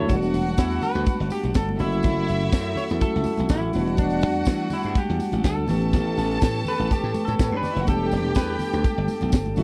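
A tight, up-front funk drum kit with a high-tuned snare drives this danceable, glamorous disco cut at 124 BPM in E dorian, joined by a punchy, bright slap bass, a clean semi-hollow electric guitar soloing through lush chorus from 0.1 seconds, smooth bowed studio strings with rich vibrato, a mellow tine electric piano and a soft, flute-like percussive tonewheel organ tucked behind, very quiet ringing congas and a jingly tambourine, all in a dry, close 1970s-style studio sound over chords moving from Em11 through F#m7 and A9 to Em7.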